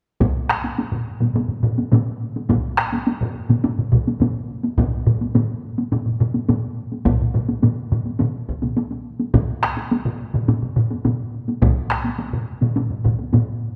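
Japanese traditional taiko drumming in a straight 4/4, ceremonial and powerful, cut from a longer piece: four taiko ensembles enter together at 0.2 s, two struck with heavy sticks and placed up front (one in a small room, one in a live room), a third with heavy sticks sitting close and dry in the background, and a fourth with hard sticks in a small room, all bathed in a dark production with the long, wet bloom of a recital hall.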